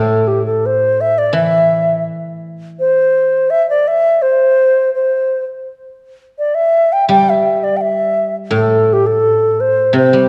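A low bamboo xiao and a guzheng sound together from the opening, in a graceful, festive passage of Chinese traditional music in C gong mode, cut from a longer piece. The end-blown xiao carries the melody up front with a pure, reedy tone, bright in character, shaped by vibrato and tongued notes in its middle-upper range. Beneath it, the guzheng accompanies in its low register, played with fingerpicks, its mellow, silvery strings ringing out. The guzheng falls away at 3.5 seconds, leaving the xiao alone, then returns at 7.1 seconds and continues until the close at 10.3 seconds. The rubato feel floats loosely over a 2/4 pulse at 84 BPM, set in a moderate concert-hall reverb with a dark, warm production.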